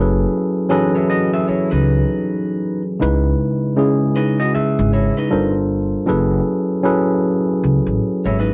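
R&B with a sultry, introspective mood at a slow 78 BPM, swung on the sixteenths in F# dorian and cut from a longer piece, where a worn, slightly out-of-tune tine electric piano carries the chords up front over a woody, growly pizzicato upright bass, joined at 0.7 seconds by a slightly broken-up, compressed electric guitar through a small old amp playing a second line, all captured in a dry, close 1970s-style studio sound with light reverb.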